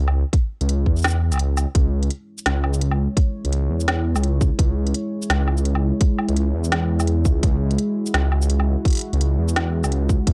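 A tense, cinematic slice of half-time drum and bass, cut from a longer piece, with a swung, dry and gritty cassette-tape character throughout. A deep, rumbling detuned saw bass with transformer saturation holds up front from the start, joined first by an organic electronic kit of woody snare, smooth hats, shaker and woodblock that sounds re-recorded in a large room, and then by a hard-clipped electronic kick that briefly drops out between 1.0 and 1.8 seconds. From 2.8 seconds a moody, wave-folded ambient pad with ring modulation, chorus, 12-bit sampler grit and sidechain pumping swells in slowly with sustained chords over the C# minor harmony.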